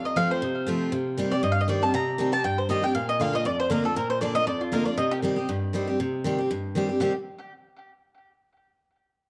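Bluegrass in C dorian at a brisk 237 BPM with a light swing, this lonesome, rustic fragment of a longer piece sets a woody, double-strung mandolin melody touched with tape echo up front beside a bright, full-bodied dreadnought guitar on fresh strings picking the accompaniment, both tuned slightly flat to A4 = 437 Hz and moving through F, Cm and Bb in a large, dark-sounding studio room.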